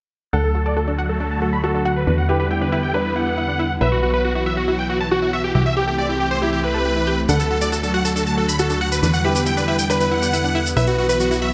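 Euphoric and emotional, this uplifting trance excerpt at 138 BPM in E minor sets a huge, bright supersaw lead melody with low-pass filtering, dub echo and a filter sweep over a very quiet punchy supersaw stab, a warm baby grand piano line with delay, a lush phased supersaw pad, a round background analog pluck arpeggio with subtle chorus, dub echo and its own filter sweep, and a funky, up-front plucky analog bass, all cycling through D, Em7, Bsus4 and C6 in a hall reverb until a grainy tube shaker joins at 7.3 s.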